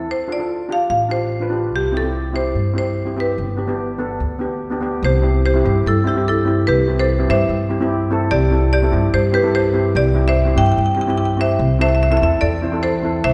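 Bouncy and sunny, this calypso excerpt moves at a brisk 146 BPM in a straight 4/4, cut from a longer piece. A hard-mallet marimba carries the melody with a bright, percussive rosewood bite, while a shimmering yet dark double-seconds steel pan struck with hard rubber sticks fills in the accompaniment, and a plucked upright bass with steel strings gives a woody, warm foundation, all three sitting up front. The harmony moves through Dm7, C and G before the second section opens on Am7/C at 5.0 seconds, and everything is bathed in a lush, reverberant hall ambience.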